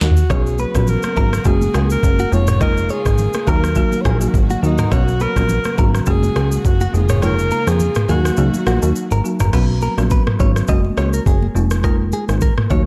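A punchy, funky analog bass with a fast-attack filter pluck sits up front in this breezy, sunny afrobeats excerpt at 104 BPM, beside an electronic afro-pop kit with a knocking kick, sharp snare, shaker, rim clicks and toms, re-recorded in a large room. A breathy, whispered alto saxophone carries the intimate melody with vibrato and tape echo until 8.9 seconds, over a bright, clean guitar riff with spring reverb and echo, a woody, rustic marimba, very quiet sul tasto strings and thin-skinned, saturated congas. Across the first section the chords cycle through Bsus2, F#add9, C#6/E# and D#m, and the kick drops out from 7.2 to 9.5 seconds. The short second section closes on Fmadd11 in a dark, warm mix.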